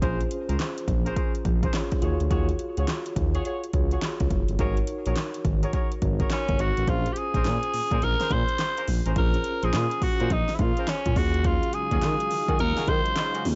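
A raspy, gritty tenor saxophone takes the lead at 6.3 seconds, sitting up front over a bouncy, confident new jack swing groove cut from a longer R&B piece. Underneath, a punchy, overdriven deep house drum kit with a fat snare, metallic hats and handclaps drives a swung sixteenth feel, while a smooth, gliding synth bass with portamento anchors minor-ninth and eleventh chords. A clean tine electric piano and vintage mellow horn stabs fill the middle, and a detuned, warbling pad with chorus drifts in behind them at 11.4 seconds, all in a dry, close-sounding mix.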